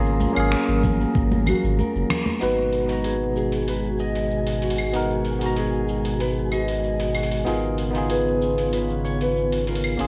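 This relaxed, wistful sunset chillout fragment opens with a bell-like tine electric piano through digital delay and a filter sweep, over an airy, breathy pad with chorus, a round, deep sub bass sitting up front, and a dark, wind-like tuned noise texture drifting in the background. A gritty, dusty sampler-style kit of claves, finger snaps, hi-hat and shaker settles in almost at once, with hard-handed, close and dry congas in the background and a very quiet, thumpy electronic kick appearing only briefly. At 1.5 seconds a full-bodied, thumb-plucked nylon-string guitar takes the melody with its own delay, and a band accent leads into the next passage at 2.4 seconds. There the congas drop away and a ringing, fingerpicked Celtic harp adds arpeggios through a low-pass filter and delay, while filter sweeps move across both harp and pad. A lush hall reverb and worn, warbling cassette-tape pitch drift give the recording a hazy, nostalgic patina.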